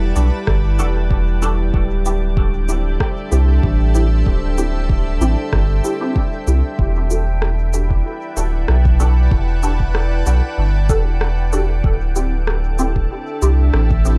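A soft, organ-like pad and a round sub bass open this hazy, spacious ambient dub excerpt in E minor, the pad holding sustained chords with ensemble chorus and its own reverb while the bass sits deep and up front. Within the first half second a muted, detuned chord stab with phaser, cassette-tape coloring and dub echo arrives alongside an electronic cabasa and rim click, also sent through dub echo, and a deep, layered electronic kick drum. The groove moves at 95 BPM in 4/4 with a light swing on the sixteenths, over chords alternating between Em11 and D9sus4. In the background, a glassy texture of drifting overtones with chorus and reverb floats through the opening, dropping out at 6.8 seconds as the passage repeats. The overall production is dark and close, with little room sound, leaving the sub bass and kick to anchor the haze above.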